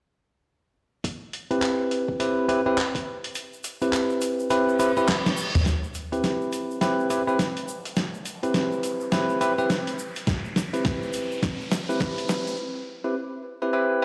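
Glitch hop at 104 BPM in a swung 4/4, funky and swaggering, built on a Cmaj7 chord. Up front sit a gritty, pitched-down sampler-style drum kit of handclaps, hi-hat, medium-tuned snare and toms and a thumpy electronic kick, while a bell-like tine electric piano plays clean stabs through 12-bit sampler grit, sidechain pumping, a low-pass filter, digital delay and a filter sweep. A grainy egg shaker enters in the background at 3.3 s, the kick drops out at 3.4 s, and an electronic reverse cymbal at 4.7 s and drum fills from 5.1 s lead into a build-up with a riser from 5.7 s, all in a plate reverb and stone room reverb.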